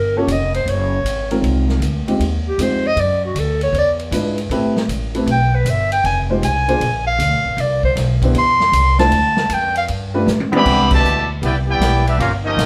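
A breathy clarinet solo with plate reverb rings out in a lively, reverberant club as a joyful big band swing excerpt in C major at 156 BPM opens on woody pizzicato upright bass, a slightly detuned vintage upright piano and a punchy-kicked drum kit, until a drum fill at 10.3 seconds brings in a tight trombone section and a clear trumpet section with vibrato carrying the melody, ahead of a band accent at 10.8 seconds.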